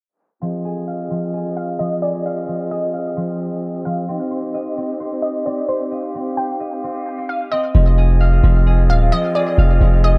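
Melancholic and hazy, this half-time hip hop excerpt moves at 131 BPM in 4/4, cut from a longer piece and tuned slightly flat to A4 = 439 Hz. From 0.4 seconds a hollow, airy flute section holds sustained chords with vibrato and a crisp, close-miked attack, while a fingerpicked concert harp rings out acoustic arpeggios through tape echo. At 1.6 seconds a glassy wavetable pluck carries the melody, its crystalline, digital tone edged with a noise layer, a filter sweep, chorus and tape echo, with a fast attack that decays into a mellow shimmer. The harmony moves from Fm7 to Cm and back to Fm7, and a filter sweep runs through the opening stretch until 7.7 seconds. At that point a long, deep 808-style bass enters up front, its sine tone striking fast and decaying low beneath the upper parts. Light reverb and a small room ambience, softened by a low-pass filter, give the whole a close, muted glow.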